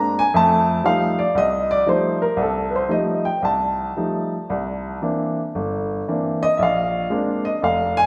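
An upright piano plays alone in this short solo jazz excerpt, its woody, natural tone sitting up front and spanning from deep bass notes to the upper treble. The mood is warm and swinging at 115 BPM in 4/4, with an uneven, rubato feel in F mixolydian as the harmony moves through F9, C9 and Bb9. A wet concert hall reverb surrounds the instrument, giving the eight-second passage a spacious, resonant setting.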